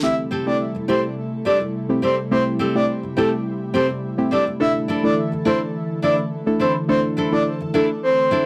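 A dense, heavily limited modern master with light reverb frames this short dancehall excerpt, which moves at 105 BPM in a straight 4/4 with a tough, hypnotic mood in A minor. A breathy, flute-like synth lead sits up front with the melody, its soft attack, vibrato and sub-octave weight coloured by chorus and tape echo. Beneath it, a deep, dark chord stab with a fast attack and filter sweep decays after each hit, while an airy pad with a moving notch and long release holds sustained chords under a gentle chorus. A fingerpicked nylon-string guitar with a full-bodied classical tone enters at 0.3 seconds, playing arpeggios close to the listener. The harmony rests on Am7 before shifting to Dsus2 at 4.6 seconds.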